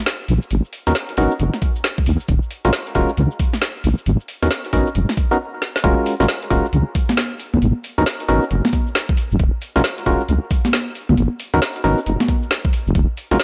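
Overdriven garage drums with a woody snare, metallic hats, congas and shaker open this moody, skippy two-step UK garage excerpt, soon joined by a deep, saturated wobble bass with chorus and hollow, mellow organ stabs trailing dub echo over Abm11 and Ebm11 chords, before a knocking electronic kick arrives at 1.6 s and a brief stop with a drum fill gives way to the drop at 5.8 s.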